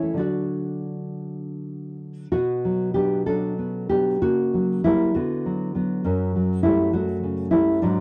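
Romantic solo classical guitar in B minor, sunny yet nostalgic, with a rubato 6/8 lilt around 55-68 BPM, where a dark, full-bodied, thumb-plucked nylon-string guitar sits up front in a dry, close 1970s-style studio sound with small room ambience, moving from D through Bm at 2.3 seconds and F#/C# to a closing F#m in this brief passage cut from a longer piece.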